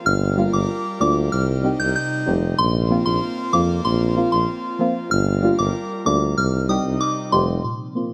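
A straight 4/4 dancehall groove sets a sultry, tough mood in a light reverb, where an up-front breathy tuba carries the bass with vibrato and scooped, jazz-style notes, a deep, nasal chord stab with a dark filter pluck and chorus fills in the accompaniment, an airy, detuned pad with a noise layer holds sustained chords, and a pure, gentle FM synth bell, placed forward, plays a high melody through chorus, phaser and delay over a Gm7, Cm and Bbsus2 progression.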